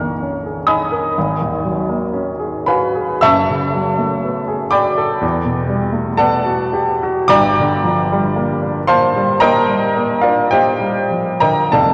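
Impressionist classical solo piano in 4/4 at a slow, rubato 48-64 BPM, this dreamy, hazy excerpt features a warm, present baby grand piano up front, ranging from F1 to F6 through drifting minor chords from Bbm7 to Gm7, all bathed in a wet church reverb and the warbling pitch drift of worn cassette tape.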